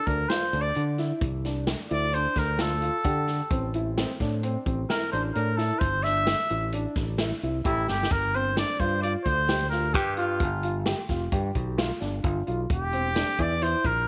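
A soft-attacked, roomy trumpet carries the melody up front, playing solo through the first 8.1 seconds of this driving, tense progressive instrumental, cut from a longer piece, in 5/4 at 131 BPM in G dorian. Beneath it, a dark, boxy grand piano plays arpeggios through tape echo, while a growly fingered electric bass and a swinging big-band drum kit with a boomy kick sit forward in the mix. A grainy tube shaker hovers in the background, and a drum fill at 7.9 seconds leads into the next section within a moderate echo-chamber studio ambience.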